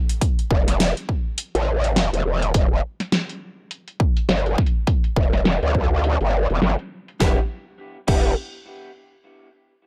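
A growling, wobbling bass sits up front in this swaggering, playful glitch hop fragment, its saturated sine tone shaped by a formant filter and chorus into a bright, compressed snarl that spans E1 to D2. Alongside it, a punchy, tape-warm electronic kick and a layered dubstep kit drive a 103 BPM groove in 4/4 with a 58% swing on the sixteenths. The kit brings a huge snare, metallic hi-hats and crash cymbal, all run through low-pass filters, and a filter sweep moves across the drums until 7.2 seconds. At that point the music shifts into a new section, and a twangy electric guitar through a small old amp enters with slightly broken-up picked stabs, roughened by vintage 12-bit sampler grit, sidechain pumping and tape echo. The harmony rests on Em7 within E minor pentatonic, and the dry, gritty production keeps the sound close and raw.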